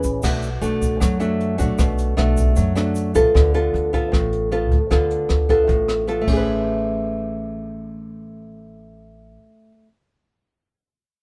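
A sunny, romantic bossa nova in A major at 154 BPM opens with an up-front, full-bodied nylon-string guitar, fingerpicked in a classical style through Bm7, Dm6 and Amaj9, over a thumpy, woody pizzicato upright bass on gut strings. A brushed jazz kit adds dark cymbals, hi-hat, rim click and a boomy kick until 6.4 seconds, while a grainy, bright tube shaker sits in the background only until 3.3 seconds. The sound is dry, with the drums and shaker in a small room and the guitar's old strings giving it a warm character in this fragment cut from a longer piece.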